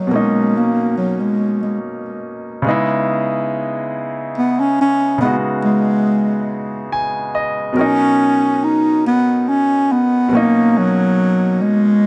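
A dark, close-miked bass clarinet leads this short R&B excerpt, carrying the melody up front over a clear concert grand piano. The tempo is a slow 47 BPM in a straight 6/8, in B major, and the mood is intimate and warm. The bass clarinet plays in a jazz style with light vibrato, a subtone and scooped notes. The polished piano accompaniment has deep bass, long sustain and audible action noise, and harmony moves from Bmaj9 to C#m9. Near the end of the opening section the piano adds a fill from 6.5 to 7.8 seconds, and a new section returns to Bmaj9 before the clip ends at 12.1 seconds. A moderate studio reverb gives the performance a gentle sense of space.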